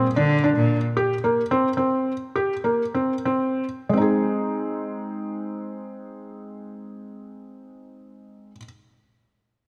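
Felt-muted upright piano arpeggios, mellow and intimate with audible action noise, open this shimmering, restless fragment of contemporary chamber music in 5/8, joined only from 0.2 to 0.8 seconds by a clear, bowed solo cello bass line with vibrato, before the pulse slows from 1.0 to 3.9 seconds, all captured up front through close, detailed microphones in light reverb.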